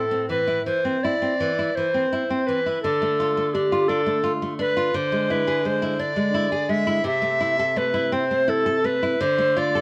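The sound is close and intimate, a duo captured live in one room with a light reverb around the players. This short cut from a longer romantic piece has a melancholic, solemn mood, unfolding in a flexible, rubato 12/8. Up front, a bass recorder carries the melody with an airy, woody tone, its tongued notes starting with a chiff and colored by vibrato. Beside it, a classical nylon-string guitar provides fingerpicked accompaniment in a warm acoustic voice, with finger squeak audible. The harmony moves from Am through Dm and E7/D to Am/C before turning back toward Dm at 9.2 seconds, shortly before the excerpt ends.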